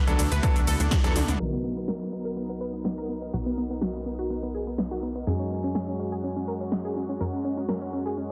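A layered, overdriven electronic kick hits hard in this progressive house excerpt, sounding only from 0.4 to 1.0 s during the opening drop as a drum fill and band accent lead into the longer second passage. At 124 BPM in a straight 4/4 and B major, the mood is expansive and hopeful, with the harmony moving from D6 to Bmaj7 and then F#sus2. A big-room dance kit with a punchy snare, crisp hats, cabasa, crash, ride and toms is also overdriven and drives the track beside a funky, wave-folded analog bass that sits up front and pumps with sidechain. Above them, a round, detuned analog pluck plays arpeggios with chorus and dub echo, a clear concert grand piano adds stabs with dub echo, and a lush supersaw pad holds sustained chords with a slow attack. The pluck, piano and pad each pump with sidechain and take filter sweeps from 1.4 s onward, while light reverb and a dense, heavily limited master keep the sound full.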